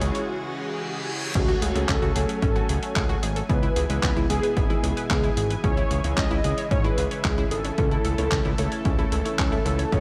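A digital ambience surrounds this nostalgic, danceable italo disco excerpt at 112 BPM in straight 4/4, cut from a longer piece. It opens with an electronic riser building over the first 1.4 seconds, joined at 0.3 seconds by a reverse cymbal during a short break, then a punchy, tape-warm electronic kick with studio reverb arrives at 1.4 seconds. A mellow, brassy synth brass carries the melody between F#4 and D#5, its detuned sawtooth tone dark and rounded, with vibrato, chorus, cassette tape colour and digital delay. Beneath it, a fat, evolving analog bass with a detuned sawtooth and filter sweep holds the low end, while a gritty, compressed sampler-style drum kit adds crash cymbal, handclaps and hi-hat. Farther back, a lush, warbling unison pad sustains chords with chorus and 12-bit sampler grit, an analog pluck spins bright arpeggios through tape echo, and a clear but worn concert grand piano punctuates with stabs. 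The chords move from C#m through F#madd9/C#, E/C# and back to C#m before landing on A/C#.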